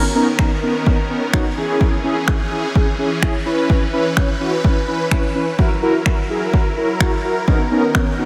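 Soaked in a huge ambient reverb, this dreamy dance-pop excerpt in B major moves at 127 BPM with a summery, euphoric glow. A round, brassy synth with chorus and vibrato carries the accompaniment over lush, detuned supersaw chords, and both pump against the sidechain through a progression of Bmaj9, E6, C#m7 and F#7. From 0.4 s a dry, overdriven analog drum machine sits up front with a punchy kick and finger snaps.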